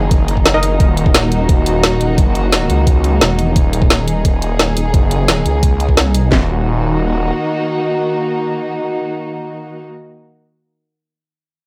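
Tense and futuristic, this cut from a longer dark technical drum and bass piece in Eb minor at 174 BPM sets a dark, sul tasto chamber string section holding sustained chords with sidechain pumping over a snarling, detuned sawtooth bass growling with distortion and overdrive, two layered electronic drum kits, one with a knocking kick and cracking snare and the other with a woody snare and bright overdriven hats, pushing up front until the drums stop near 6.4 seconds, while a muted, deep dub chord stab with chorus and dub echo flickers briefly at 0.5 seconds.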